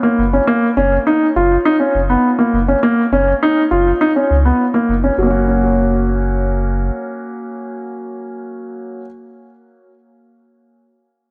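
A huge ambient reverb, moderate in level, wraps this short cut from a longer electronica piece in a spacious, luminous glow. At a straight 102 BPM in 4/4 and rooted on an F# major chord, the mood feels hopeful and open. A polished, present grand piano sits up front, playing a riff in its middle register with a touch of delay. Just after it, at 0.2 seconds, a deep, round sine sub bass enters with a fast attack and mellow, sustained notes, also up front and warm beneath the piano. The bass drops out at 6.9 seconds, leaving the piano alone until it ends at 9.1 seconds.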